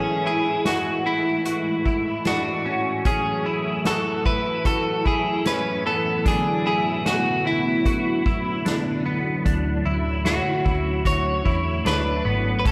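A slow, straight 75 BPM pulse in 4/4 carries this ethereal, haunting dream pop excerpt, where a slightly broken-up electric guitar melody with spring reverb and analog delay sits up front over warbling, phased string-machine cello chords and bright, hollow-bodied semi-hollow guitar arpeggios, while a distant, roomy soft-mallet drum kit enters at 0.7 seconds and a dark, round, foam-muted picked bass joins at 9.5 seconds, all moving through Amaj7, F#m7, E9sus4 and Dmaj9 in a lush hall reverb.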